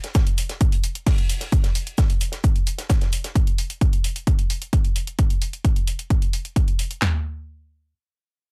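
A layered electronic hi-hat opens this techno excerpt at 0.0 seconds together with a dark, dry acoustic soul kit whose hi-hat, shaker and medium-tuned snare sit low in the mix, all high-pass filtered, with the hats and percussion pumping against a sidechain and a rolled-off top. The techno drum kit dominates up front, its heavy kick and punchy snare driving a straight pulse alongside handclaps and toms, with a tape-warm character and a re-recorded small-room sound. The quieter acoustic layer drops out at 3.4 seconds, leaving the electronic parts to carry the intense, industrial mood. The electronic hats run until 7.0 seconds, where a brief new section begins as this fragment of a longer track draws to a close. Little reverb keeps the sound close and tight throughout.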